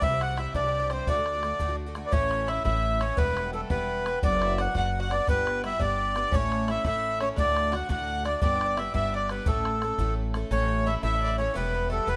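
A rollicking 6/8 jig drives this cheerful Celtic folk fragment, cut from a longer piece, with an open, boomy bodhran close at hand until 10.4 seconds and a woody pizzicato upright bass sitting up front. A reedy, dry-tuned accordion carries the melody close-miked and full, while a rich fiddle with light vibrato and a mellow, metallic Irish bouzouki trace second lines in the background. A brilliant, shimmering picked twelve-string acoustic guitar, octave-doubled with audible finger squeak, fills out the accompaniment in a rough home demo mix with light reverb and small-room ambience.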